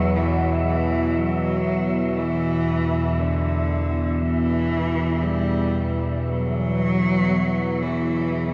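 Cavernous and ominous, this dark ambient drone drifts in free time, a short passage cut from a longer piece. An analog drone sits up front across the low register, its sawtooth and pulse-wave tones evolving through pulse-width modulation with slow attacks, long releases, and a coat of chorus and phaser. Over it, a rich cello plays the melody between D3 and G3, one bowed player with focused vibrato, placed up front yet sounding distant through shimmer reverb and analog delay. In the background, a breathy, wind-like tuned noise texture holds an airy E5, dark and sustained, blurred by its own reverb and more shimmer. The whole mix is soaked in a huge, dreamy reverb whose long tail makes the space feel vast.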